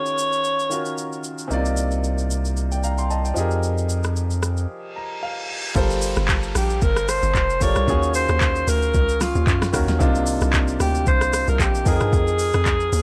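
Soulful and hypnotic, this amapiano excerpt moves at 113 BPM in 4/4 with a lightly swung sixteenth-note feel, set in G phrygian over a cycle of minor eleventh chords. A bright concert grand piano carries the accompaniment throughout, its brilliant, intimate tone revealing audible action noise, deep bass and long sustain, and it plays a fill during the brief break at 4.7 seconds. An electronic R&B drum kit enters at 0.1 seconds with a soft kick, fat snare, smooth hi-hats, handclaps, rim click and shaker, sounding tape-warm and up front. A deep, thick, saturated sub bass holds the low end early on, then after a reverse cymbal and downlifter lead into the drop at 5.8 seconds, a hollow, bouncy log drum bass takes over with percussive, mellow, decaying hits. A breathy alto saxophone with light vibrato offers a short phrase at the opening and returns for a roomy, distant yet forward solo melody in the second half. 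The whole recording has a dry, gritty hardware character set within a digital ambience.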